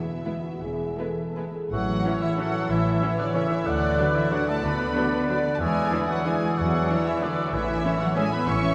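An elegant, sweeping orchestral ballroom waltz in 3/4 opens with a lush violin section singing the melody with expressive vibrato and a soft attack, over a mellow, ringing concert harp tracing arpeggios in the background and a very quiet, clear French horn section holding sustained chords. Within the first second a second violin section adds a smooth, even line, a very quiet viola section supplies intense accompaniment, and bowed cellos and a rich double bass section settle in beneath. At 1.7 s the woodwinds join: a pure, hollow flute high above, a clarinet with a soft attack, and a cor anglais, each adding a background line, while a punchy bassoon bolsters the accompaniment. The pulse is rubato, stretching and easing in ballroom fashion as the harmony moves from E through A and Bm/D to E7 before settling on A. A wet cathedral reverb with a long tail bathes the ensemble in a spacious cathedral sound, and the passage is cut from a longer piece.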